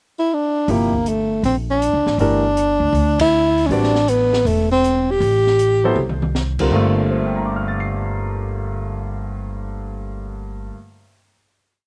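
A breathy, subtone tenor saxophone whispers an intimate, motif-based melody over syncopated quartal comping from a natural-sounding grand piano, a woody two-feel upright bass and a dark, smooth drum kit keeping time on the hi-hat in this searching, hypnotic modal jazz piece in G dorian at 159 BPM with a swung feel, marked by a band accent at 3.1 seconds and a drum fill at 6.0 seconds before the piano and bass hold a closing Gm11 chord.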